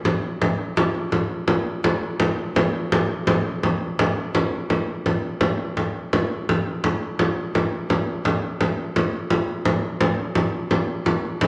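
Ancient and rustic in mood, this short medieval excerpt features a lone frame drum in a straight 6/8 at around 113 BPM, gradually speeding up over its brief length. The drum enters at 0.1 seconds and runs to the close at 11.5 seconds, sitting up front with a hard-handed, acoustic tone that is compressed and saturated. A large, wet studio reverb surrounds the drum with a 1.4-second tail.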